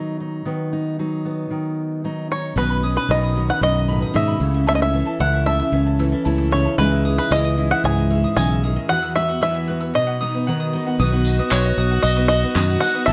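A twangy, up-front bluegrass banjo carries the melody through this warm, uplifting indie folk excerpt at 114 BPM, opening over fingerpicked acoustic guitar before a bright jumbo-bodied picked guitar, double-strung mandolin arpeggios with analog delay, and a direct electric bass join at 2.6 seconds, a jingly tambourine arrives at 7.3 seconds, and a clear, earthy fiddle with light vibrato adds a second line at 11.0 seconds alongside a brief burst of crisp group handclaps, all set in a small room with plate reverb on the banjo, guitars, mandolin and fiddle.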